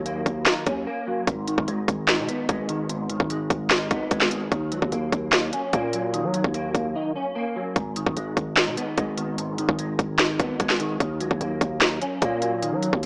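Melancholic and eerie, this half-time trap cut pairs a dark, clean semi-hollow electric guitar with ensemble chorus up front against a deep, long sine 808-style bass and an overdriven, up-front trap kit of hard-clipped kick, sharp snare, crisp hi-hats and handclaps, cycling between D#m7 and G#m with brief breaks near 0.9 and 6.9 seconds, all heard through light reverb and a small-speaker sound.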